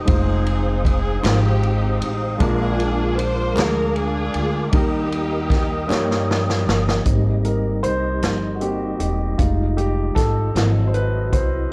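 In a slow 6/8 feel, this uplifting, soulful gospel excerpt rides a swinging big-band drum kit, distant and roomy with a boomy kick, medium-tuned snare, hi-hat and ride, over a woody, growly pizzicato upright bass placed up front. Lush bowed strings carry the melody until 6.3 s above concert grand piano accompaniment with deep bass and a mellow, flute-like tonewheel organ with key click and fast rotary speaker, while very quiet, hollow group handclaps join at 1.2 s. After a drum fill, the piano takes a solo from 7.1 s, and the whole recording sits in light reverb with the warbling pitch drift of worn cassette tape.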